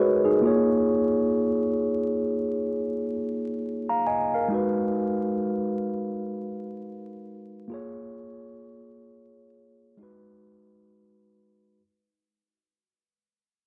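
Hip hop in free time and G# dorian, tuned to A4 = 442 Hz, this reflective, nostalgic excerpt from a longer piece features a solo tine electric piano, mellow and clean, sitting up front as though heard through built-in speakers, with a low-pass filter softening its tone across a range from G#3 to A#5. The chords move between A#m7 and G#m7, beginning with A#m7 at 0.4 s and returning to G#m7 at 10.0 s, while the whole 11.8 seconds fade out. A moderate plate reverb with a 2.8-second decay lends the recording space, and vinyl crackle adds a dusty, aged patina.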